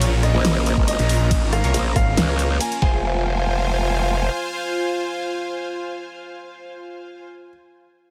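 A half-time 4/4 groove drives this aggressive, heavy wobble dubstep excerpt, which opens mid-drop with an overdriven dubstep drum kit of huge snare, rim click, bright hats and ride cymbal, joined at 0.8 s by a knocking electronic kick, while a snarling, detuned saw bass and a wobbling, formant-filtered growl bass sit up front. Beneath them a lush supersaw pad and a dark, floating string section pump with sidechain, and a clear concert grand piano carries the melody in the background through tape echo. From 1.6 s a bold, punchy orchestra-hit-like synth stab adds phaser-tinged accents, and the harmony moves from Bb minor to F minor at 2.8 s.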